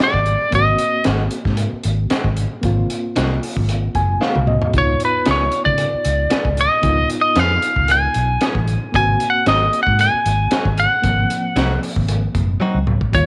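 A lightly reverberant, gritty mix, cut from a longer piece, this swaggering straight-eighth soul blues rides on a crunchy breakbeat kit with a high-tuned snare and rolled-off top, a round, foam-muted vintage bass, and a reedy electric piano shimmering with fast tremolo. A clean, direct-recorded electric guitar adds picked stabs, while the twangy, slightly broken-up lead guitar sits up front, sounding briefly at the start before returning at 4.8 seconds to carry the melody. The electric piano slips in a fill as the harmony moves from Ab7 to Db7, and the drums add fills at 4.2 and 12.6 seconds.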